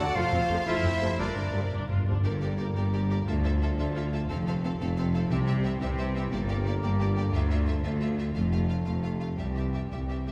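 A silvery concert flute rings out at the opening with a pure, soft-edged tone, joined by a bright, present clarinet on a second line before both fall away at 1.7 seconds. This is a triumphant, soaring passage of heroic adventure film scoring in 6/8, cut from a longer piece. An intense chamber violin section carries the melody high above lush symphonic violins and smooth, even violas in the background. Underneath, a very quiet French horn section holds chords briefly while a roomy trombone section sustains harmony throughout, and focused double basses and a clear cello section ground the bass. Soft-mallet timpani with round calf heads add a fill from 1.2 to 2.2 seconds, and as it ends a mellow, distant tuba joins the low end while the music moves into its second section. The orchestra sits further back in a reverberant scoring stage, giving the whole ensemble a grand, spacious sheen.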